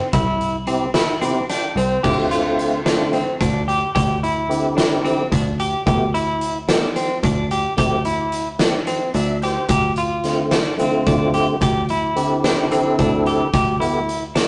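A clean, compressed electric guitar opens at 0.0 s with arpeggios shimmering through harmonic tremolo, joined at once by a round, foam-muted picked bass and an oversized low-tuned drum kit with a boomy kick, fat snare and dark cymbals, while a faint, grainy egg shaker ticks underneath. This is driving, tense progressive instrumental band music in 7/8 at 219 BPM in D minor. A fat tonewheel organ with key click and chorus vibrato enters at 0.7 s to comp, adding fills at 1.2 s and 8.9 s over seventh and add9 chords that mostly sit on a D pedal. It is all captured in a rough rehearsal-room recording with tube saturation, a rolled-off top and a wet stone room reverb.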